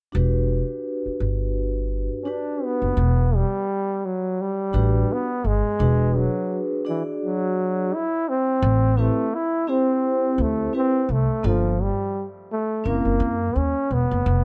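A mellow, cool jazz-hop piece with a swung sixteenth-note lilt, where a woody pizzicato upright bass sits up front beside a soft-mallet vibraphone whose ringing, metallic tone carries a slow motor vibrato until 13.3 s. At 2.2 s a solo trombone enters up front, playing a jazz-style melody with a smooth top, light vibrato and analog delay over shifting seventh chords. Moderate studio reverb and a dark, warm production round out this excerpt.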